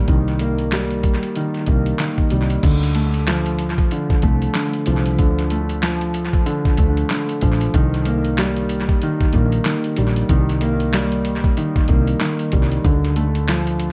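A dark concert grand piano opens this gritty boom-bap hip-hop excerpt at 94 BPM in D phrygian, its mellow, vintage tone carrying audible action noise through cassette tape coloring and analog delay, before a growly, round fretless electric bass and a compressed, pitched-down sampler-style drum kit with a thumpy kick, medium-tuned snare, hi-hat, handclaps and crash cymbal join at 0.1 seconds, all swinging over shifts between Cm7 and Dm in a dry, echo-heavy mix.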